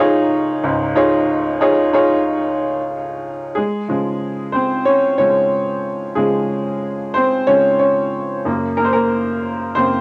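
Pop in an anthemic, hopeful mood, this short cut from a longer piece features a lone upright piano in 4/4 with a light 16th-note swing. The piano sounds clear, woody and open, sitting up front and ranging from deep bass notes to bright upper tones. Its sound carries the character of cassette tape, and a small room adds a moderate reverb that suits the homemade recording. The harmony opens on a Dbadd9 chord, settles onto a plain Db at 3.6 seconds as a new section begins, and shifts to Gb at 8.5 seconds. The piano plays alone throughout, giving the passage an intimate yet uplifting feel.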